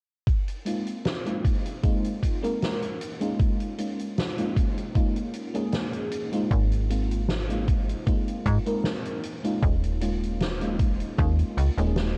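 A thumpy, sampler-style electronic kick and a soft-mallet kit with hi-hat and a fat snare open this nostalgic, faded vaporwave fragment at 0.3 seconds, settling into a slow 77 BPM groove in 4/4 with a light swing on the sixteenths. At 0.7 seconds a lush, dreamy FM electric piano layered with a soft pad enters up front, its dark, detuned tone colored by tremolo, subtle chorus and tape echo as it moves between Ab6/9 and Eb7sus4 in Ab major. The kick sits forward with a tape-warm punch, while the mallet kit sounds natural, as if heard in a hall. At 6.5 seconds a slap-like FM bass arrives, snappy and metallic at the attack with a tube-saturated edge, sitting prominently in the low register. Light reverb, a small room sound and a cassette-tape haze give this short excerpt its worn, hazy character.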